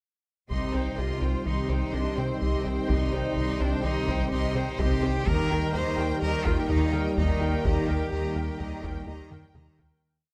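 Relentless and vast, this complete cinematic cue blends orchestra and electronics in a hybrid film-score style, driving at 126 BPM in a straight 5/4 in C minor. A solo cello carries the rich, focused, bowed melody with vibrato and a touch of delay, while a lush violin section rocks on a two-note melodic figure high above and a second, softer violin section and a close viola section rock on two-note figures in the background. Beneath them, bowed cellos mark the bass on the beats, a very quiet double bass section doubles the bass line, and a rubbery, bouncy square-wave synth bass pulses an ostinato that sits forward in the mix. Dark French horns and trombones with a soft attack hold very quiet, slowly swelling chords alongside a hollow, flute-like pad that enters at 0.9 seconds, while a harp-like synth pluck rings out mellow, chorused arpeggios. A taiko ensemble pounds a big drum ostinato with heavy sticks in a live room, and the harmony moves from C minor to E-flat at 5.3 seconds. 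The piece fades out from 7.7 seconds, closing on a drum fill at 9.3 seconds, all captured with close, detailed microphones and light reverb.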